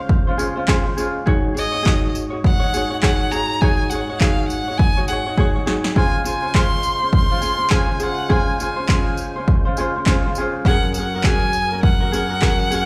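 A single bowed violin carries the melody with a rich, smooth vibrato and slapback echo in this sunny, heartfelt acoustic pop excerpt at 102 BPM with a swung 16th feel. A mellow fingerpicked ukulele, also with slapback echo, accompanies it, while a fat tonewheel organ with key click, chorus vibrato and slow rotary speaker sustains chords moving from Dbmaj7 through Ab7sus4 back to Dbmaj7 and on to Gbadd9. A punchy analog drum machine of kick, snare, handclaps and tambourine sits up front with a fill at 5.4 s, and the sound comes across like a live gig through a club PA in a small room.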